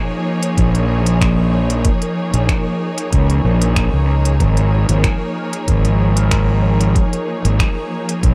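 Lightly reverberant and hazy, this deep ambient dub excerpt at 94 BPM in 4/4 sets lush bowed strings holding A#m7 and G#sus2 chords over an up-front, overdriven fuzz bass and a muffled, pitched-down thumpy kick from 0.6 seconds, with crisp hi-hats and finger snaps trailing dub echo and a bubbling, resonant sawtooth texture with chorus murmuring in the background.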